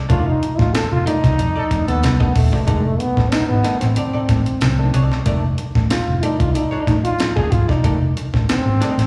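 A playful, strutting funk groove at 93 BPM in F mixolydian opens on an F13 chord, with a punchy, forceful trombone soloing up front with vibrato and slapback echo over a gritty, compressed breakbeat kit with thumpy kick and high-tuned snare, a round, foam-muted fingered bass, a dark hollow-body archtop guitar, and a worn, slightly out-of-tune tine electric piano jabbing lightly overdriven stabs in the background, while very quiet congas and a jingly tambourine add colour, a mellow, distant horn section slips in an octave-doubled line from 1.6 to 2.1 seconds during an early band accent, and the whole excerpt sounds like a live gig heard through the venue's PA in a recital hall.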